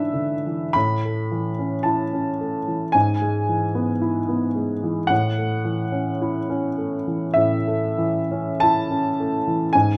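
Dreamy and tender, this brief excerpt from a romantic classical nocturne for solo piano drifts in A major at a slow 46-56 BPM in 4/4, its rubato phrasing giving the time a gentle, breathing flexibility. A baby grand piano sits up front, present and long-sustaining, ranging from G#2 to B5 as it moves through E7/G#, A, E/G# and back to A by 5.1 seconds. Moderate reverb from a large studio room surrounds the instrument with a soft, spacious glow.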